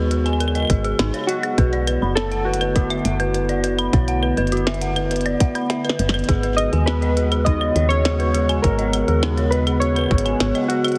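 Melancholic and glitchy, this 102 BPM IDM excerpt in G# phrygian sets a warbly tape-like pad of sustained chords and eerie, inharmonic synth-bell arpeggios over a soft, woody FM bass and an up-front tight electronic kick, while a glitchy drum kit of claves, clicky hats and a tiny snare adds a fill near 5.7 seconds, nostalgic lo-fi synth keys carry the melody from 1.3 seconds, and a very quiet flickering grainy texture arrives at 7.1 seconds, all inside a huge ambient reverb and a heavily compressed radio sound.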